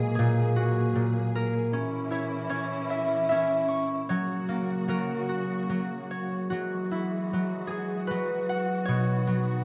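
This children's piece moves in a gentle, sleepy 3/4 at around 76 BPM, with a rubato feel that lets the time breathe. A concert harp carries the melody throughout, its mellow, fingerpicked tone ringing up front across a range from A#2 to C#6. Beneath it, a muted string section holds bowed chords, its dark, veiled con sordino sound carrying vibrato and a smooth top. The harmony drifts from F#add9/A# through C#m to F#, then shifts at 6.5 seconds into a second passage built on Eadd9 and B. A modest small-room ambience gives the fragment an intimate, lullaby-like closeness.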